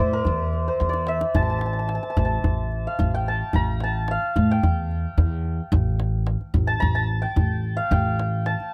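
Soulful and hypnotic, this brief Persian modal ensemble passage in shur sets a mellow, shimmering hammered santur carrying the melody up front over a woody, thumpy upright bass plucked on gut strings. A tight, close tombak played with hard hands keeps a straight pulse and breaks into a drum fill from 0.8 to 1.4 seconds. The sound is dry, with little reverb around the acoustic instruments.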